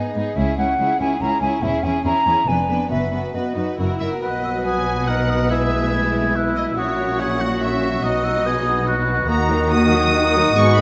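An urgent, stormy classical passage in B major at 142 BPM in 3/4 opens with a clear, intense violin section carrying the melody, while a pure, crisp-edged concert flute plays a high second line and a chamber violin section sits in the background. Beneath them, a dark viola section with portamento and a lush cello section fill in, and an expressive double bass section joins at 0.4 seconds. At 4.2 seconds an oboe with a vintage character and a roomy bassoon enter as the harmony moves from C sharp minor toward B major, all set in a moderate concert hall reverb in this passage cut from a longer piece.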